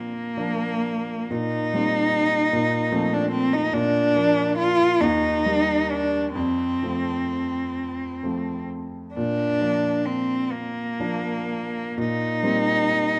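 Lyrical and serene, this romantic classical excerpt pairs a rich, expressive bowed cello carrying the melody with vibrato and portamento, over a natural-sounding baby grand piano whose warm accompaniment sits just beneath it. The 6/8 lilt moves with a gentle rubato as the harmony first unfolds over a Bb bass, then steps through Eb and F before settling back on Bb. Both instruments are close and up front, caught by detailed microphones within a moderate recital hall ambience.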